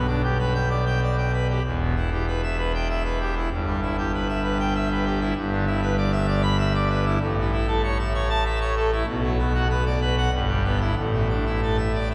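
A full pipe organ carries this jubilant, majestic classical toccata, playing solo and up front with brilliant mixtures and a romantic voicing that reaches from deep pedal notes to a ringing treble. Moving in a stately triple metre, the harmony passes through E minor colours toward A and B minor before arriving on a suspended A chord at 11.0 seconds. A long, wet cathedral reverb surrounds the organ in this 12-second passage, cut from a longer piece.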